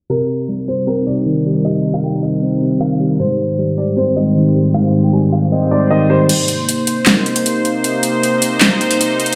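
Dark and melancholic, this short trap passage, cut from a longer hip hop piece, moves at 155 BPM in 4/4 with a half-time feel, in C minor and tuned to A4 = 438 Hz. A mellow, short-sustaining baby grand piano carries the melody through tape echo, sitting back in the mix behind a clean, bright tine electric piano that plays the accompaniment up front. A detuned sawtooth pad with chorus and a soft attack holds evolving sustained chords throughout, while a filter sweep colours the opening passage as the harmony moves from Cm7 to Abmaj7 and back. At 6.3 seconds both pianos stop and an overdriven electronic drum kit enters with a fat snare, metallic hi-hats, handclaps and crash cymbal, playing alongside the pad until 9.4 seconds. The mix carries light stone-room reverb and a low-pass filter, as if played on a big sound system in a bare room.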